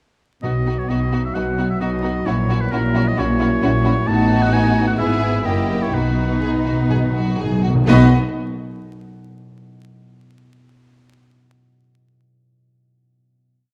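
At 0.4 s a symphony orchestra enters all at once in B major with a short, spirited and cheerful romantic piece that moves fast, around 121-134 BPM in 4/4, with a flexible rubato pulse and a dramatic edge. A bowed violin section carries the melody with lush vibrato and repeated notes, while a clear solo oboe sings a second line above it and another, more focused violin section adds a second line beneath. The violas fill in expressive chords in the rhythm of the tune. Dark French horns hold soft-attacked sustained chords in the background, and the bass comes from cellos playing on the beats with passing notes and a rich, distant double bass section doubling that line. A mellow concert harp rings out fingerpicked broken chords throughout, and close, dry timpani strike single notes on B, returning with a fill from 5.9 s. The harmony moves from B through F#7 and E back to B, and the harp rings on alone into the final chord until 9.8 s, all set in a moderate scoring-stage reverb with a warm cast and a vinyl crackle.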